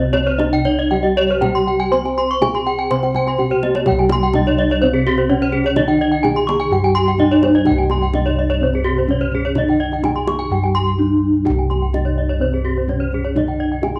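Shimmering and brilliant, this Balinese gamelan passage, cut from a longer piece, sets a mellow, padded bronze metallophone melody over a darker, smooth metallophone accompaniment in the background and round, beating bossed gongs up front carrying the bass. Two bright metallophone parts struck with horn mallets spin airy arpeggios above, their paired tuning producing ringing, shimmering beats. A tight kendang sits softly in the background and plays a drum fill from 3.4 to 3.9 seconds that leads into a new section, all within a moderate echo-chamber reverb.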